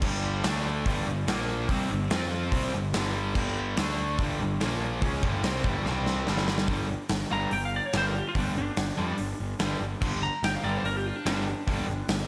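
A round, fuzzy picked bass and a punchy gated 80s drum kit sit up front in this heavy, aggressive hard rock passage from a longer piece, with two bright picked guitars, one overdriven with spring reverb and one tightly distorted, churning out the riff in the background, a drum fill at 5.9 seconds, and a dark, slightly broken-up, compressed lead guitar entering at 7.3 seconds with a solo through digital delay, all set in a lush hall for a big arena sound.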